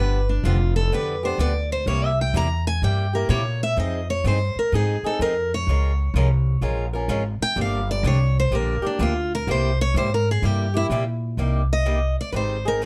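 Jazz manouche in a swung 4/4, this virtuosic, bittersweet excerpt from a longer piece features a picked steel-string acoustic guitar soloing up front from 0.0 to 11.4 seconds with fresh strings and audible finger squeak, over a bright, boxy archtop guitar accompaniment and a dark, woody, thumpy pizzicato upright bass on gut strings, all captured with close, detailed microphones and little reverb.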